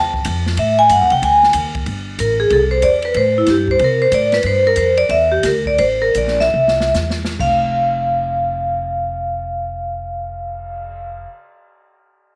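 Heard in a small room with a moderate echo-chamber reverb, this cut from a longer small-group swing and bop piece feels sophisticated and playful. A bright, ringing vibraphone with medium motor vibrato sits up front on the melody over a woody, thumpy pizzicato upright bass on gut strings, while the airy, polished acoustic drum kit sits further back with dark cymbals, a medium-tuned snare and a boomy kick. The swung pulse slows from 4.4 to 7.4 seconds, and a drum fill starting at 6.5 seconds leads into the closing passage.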